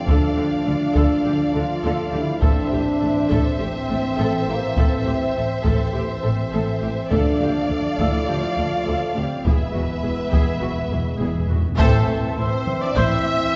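Heard from further back in a wet scoring stage with a long reverb tail and a softened, dark top end, this epic orchestral film cue feels relentless and heroic, cut from a longer piece. Lush bowed violins carry the melody with vibrato while a second violin line and close violas fill the middle, and rich cellos and double basses sit in the background on the bass. A distant French horn section holds sustained chords beside a mellow trombone section, and a close, dry taiko ensemble struck with heavy sticks drives the whole passage. Round, soft-mallet timpani enter with a fill at 9.5 seconds, just as the harmony moves from D minor to E, and carry it toward the return to A minor. At 11.8 seconds the ensemble hits an accent on A minor and an airy silver flute joins with a second line high above the strings.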